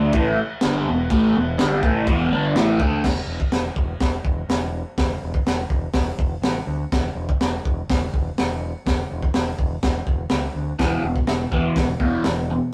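Garage rock with a menacing, raw edge at 124 BPM in E minor, built on a crunchy, overdriven, double-tracked electric guitar riff treated with phaser that drops out at 3.0 seconds and returns at 10.8 seconds. A growling, punchy fingered bass with its own overdrive runs throughout, alongside a gritty breakbeat drum kit with a high-tuned snare, tight kick and dark, rolled-off cymbals. The rough rehearsal-room recording carries light reverb and warm saturation.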